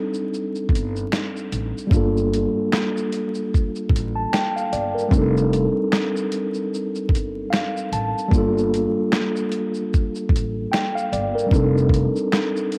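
A lazy swung groove from a gritty, pitched-down boom bap drum kit with a thumpy kick, snare, hi-hat, shaker and finger snaps drives this reflective, hazy lo-fi hip hop clip, cut from a longer piece, where a mellow tine electric piano sits up front alongside the drums, both with cassette-tape color, alternating a rootless F13 with Gm7 chords and adding a brief fill around 7.1 seconds, while a dark, woody pizzicato upright bass on gut strings joins at 0.7 seconds, all bathed in spring reverb and vinyl crackle that give it a homemade cassette feel.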